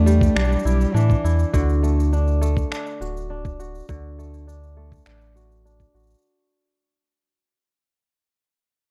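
A dry, close 1970s-style studio sound frames this delicate, wistful folktronica excerpt at 102 BPM, where a dark, bowed cello sings a brief vibrato-laden melody with portamento until 1.5 s over bright, fingerpicked kora arpeggios touched with tape echo and a filter sweep, a deep, round sine sub bass, a muffled, thumpy electronic kick drum, and acoustic cabasa and finger snaps, moving from Em7 to D as the whole passage fades out by 6.2 s while the kora rings on until 7.4 s.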